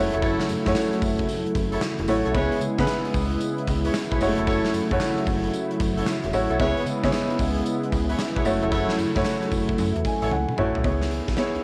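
This bouncy, slick new jack swing excerpt opens with a clear, up-front baby grand piano playing accompaniment, a brassy, detuned sawtooth pad sustaining chords with chorus and vibrato, and a snappy FM bass with a metallic, digital attack. A gated 80s drum kit with a punchy kick, a medium-tuned snare, hi-hat, tambourine and toms drives the groove at 113 BPM in 4/4, with a 65% swing on the sixteenths. A distant, roomy horn section in a jazz style adds ensemble stabs colored by tape echo. The harmony alternates between F#m7 and C#m7. The piano plays a fill at 9.8 seconds, the drums add a fill at 10.3 seconds, and the pad stops at 10.8 seconds as the passage turns back to C#m7. The piano, pad, horns and drums carry a cassette-tape grain, and the whole home recording sits in a small, lightly reverberant room.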